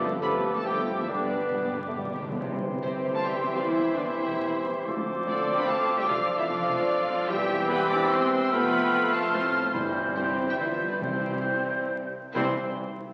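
Spirited and graceful, this fast romantic movement for symphony orchestra moves in a brisk 3/4 at around 133-149 BPM in C major, a short passage cut from a longer piece. A close, lush violin section carries the melody from 0.2 seconds, bowed smoothly with vibrato, while a second, more intense violin section sits distant in the background. Airy flutes high above, a clear and present clarinet, and a cor anglais with a smooth top add further lines. Violas, a very quiet bassoon, and sustained chords from French horns and a roomy trombone section fill out the accompaniment, with cellos and very quiet double basses underneath. Round timpani on soft mallets play a fill near the start and return at 9.7 seconds as the music slows from 9.1 seconds, moving through a G7 to settle on C. The sound has the crackle of a very old 78 rpm record and a wet scoring-stage reverb.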